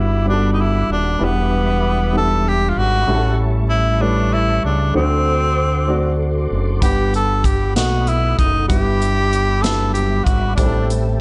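In a slow, straight 6/8 at 64 BPM, this hopeful slow gospel fragment is carried by a breathy, intimate tenor saxophone melody up front, over a woody upright piano, a mellow flute-like tonewheel organ in the background with slow rotary speaker and chorus vibrato, and a thick, growling FM bass sitting prominently underneath. A polished big-band drum kit with a punchy kick, snare and hi-hat joins at 6.8 seconds, adding airy hall ambience. The harmony moves from Gmaj7 through Em7, A7 and D7 before returning to Gmaj7 and passing through B7 and Em7/G to Am7, all in light reverb.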